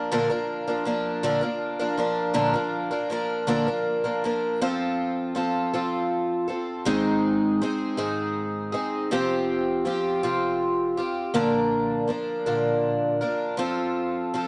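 In a straight 6/8 at 53 BPM counted in dotted quarters, a lone picked twelve-string acoustic guitar, boxy and shimmering with its octave-doubled strings and placed up front, plays a nostalgic, jangly rock passage through Bb, F, Ab, Csus4 and back to Bb and F, carried by a dark, warm production in a moderate echo-chamber reverb, and the clip moves into its second section at 4.6 seconds.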